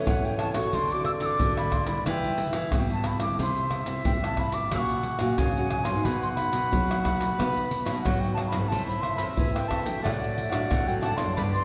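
Samba and choro at 90 BPM in 4/4 with a straight feel, this lively, yearning passage is cut from a longer piece and set in a reverberant concert hall or church. A close-miked wooden flute carries the melody between E5 and E6 with an airy, warm tone, tongued notes and vibrato, while a clarinet with a soft attack and smooth top adds a classical-style second line beneath it. Two fingerpicked nylon-string guitars share the harmony: one plays classical accompaniment with a warm sound, and the other, set further back with bright, fresh strings, covers the bass between F#2 and B3. Maracas, surdo, pandeiro and tamborim sit up front from 0.1 seconds, with a deep surdo and hard hand strikes given a compressed, saturated edge. A crisp, picked cavaquinho joins in the background at 8.7 seconds as the chords move from Am to D/A.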